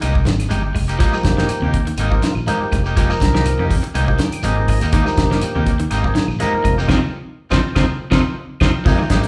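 Driving and funky, this afrobeat excerpt at 122 BPM in F minor sits on a single Fm11 chord, with a damped 70s drum kit up front, its fat snare, tight kick and dark cymbals dry, over a round, dark fingered electric bass. Two slightly broken-up electric guitars, one playing arpeggios in the background and a twangy one playing stabs, mix with quiet congas, grainy shekere and woody claves, all in a moderately reverberant large room where the band plays live together. A full, clicky tonewheel organ through a slow rotary speaker enters at 1.1 seconds and adds fills, and the band hits accents near the end as the drums fill at 8.1 seconds.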